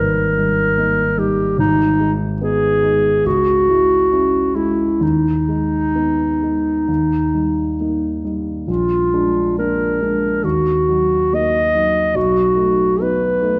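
This is a romantic classical duo for clarinet and grand piano, solemn and melancholic in mood, moving at a slow, rubato pace of 63-76 BPM in 4/4 and set in G# minor. The clarinet carries the melody throughout the 13.6 seconds, its tone mellow with a smooth top, sitting up front as a classical solo voice between D#4 and D#5. Beneath it, the concert grand piano supplies a dark accompaniment with deep bass reaching down to G#1, also placed up front but a little quieter than the clarinet. The harmony travels from G# minor through C# minor and a dominant D# toward A#7, D# minor and a closing B7. A wet concert hall reverb with a 1.8-second decay surrounds the pair, giving the passage a spacious, resonant setting, and the clip is cut from a longer piece.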